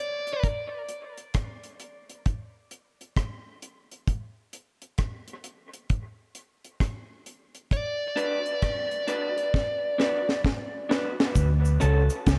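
A brief burst of bluesy, distorted lead guitar with dub echo opens this hazy, spacious dub reggae excerpt at 66 BPM in D major, and a deep, dry reggae kit with a high-tuned snare and tight kick soon carries a long, chordless break. At 7.7 seconds the lead guitar returns over a D6 chord, joined by a slightly broken-up, lo-fi electric guitar through a small old amp, soaked in spring reverb and dub echo, before a drum fill. At 11.4 seconds, on Dmaj7, a round, punchy, foam-muted bass steps forward, with a faint cabasa in the background.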